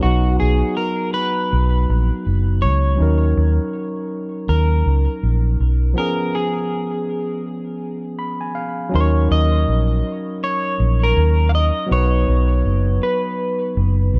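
A lightly swung 81 BPM lovers rock groove in Eb minor carries a longing, bittersweet mood, with a round, foam-muted fingered electric bass sitting up front, a barky tine electric piano through a combo amp adding dub echo and a fill at 7.8 seconds during the break, and a dark, slightly broken-up electric guitar singing the tape-echoed melody over chords moving from B through Ebm7 and Db7, all in a dark production with light reverb, cut from a longer piece.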